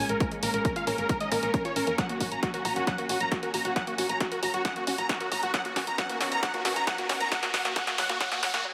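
Driving and euphoric, this uplifting trance build-up at 135 BPM in 4/4 sets a huge, detuned supersaw melody up front with low-pass filtering and dub echo over lush bowed strings holding sustained chords in the background, a warbling unison pluck arpeggio carrying a filter sweep and its own dub echo, and a tight, nasal sequencer bass, with sidechain pumping running through the lead, strings, pluck, bass and the high-passed hi-hats of a punchy analog drum machine whose tape-warm snare and rim click sit alongside an overdriven, layered electronic kick, with a drum fill from 2.0 s, while a very quiet electronic riser enters at 5.2 s as the chords move from A#m7 to F# to Badd9 inside a moderate digital room reverb.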